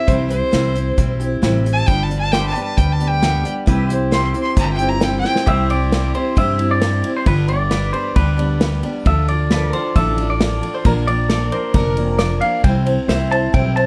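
Lightly reverberant and easygoing, this nostalgic honky-tonk excerpt opens with a biting, up-front fiddle solo over bright jumbo acoustic guitar, a growly pizzicato upright bass, an acoustic kit with dark cymbals and a punchy kick played with bundle sticks, and a pedal steel guitar holding background chords with volume swells, until a drum fill at 5.2 seconds hands the lead at 5.5 seconds to a twangy, compressed clean electric guitar melody.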